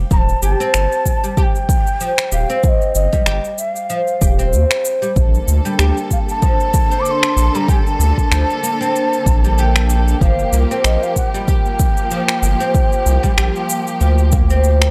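Mystical and warm, this organic downtempo excerpt sets an airy, distant bamboo bansuri melody with gentle vibrato over a bright, woody oud playing plucked arpeggios, the oud coloured by 12-bit sampler grit and both carrying analog delay. A round, dark analog bass with tube saturation sits up front beside a deep, tape-toned electronic kick, while electronic shaker and finger snaps add a lightly swung pulse. At 5.2 s a rich, smooth bowed string section enters with sidechain pumping, all within a dry, gritty small-room sound.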